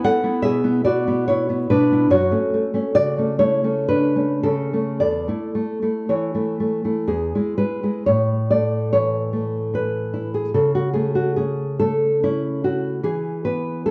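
A lone nylon-string guitar, thumb-plucked and placed up front, opens this tender, sunny romantic piece for solo classical guitar in A major, moving in a rubato 3/4 between 50 and 76 BPM across a range from E2 to F#5. The opening phrase passes through E, F#m and A/E before a second passage begins at 8.1 s, settling on A and A/C# and closing on E5 at 13.0 s. A moderate recital hall reverb and a dark, warm production surround the instrument in this short section cut from a longer work.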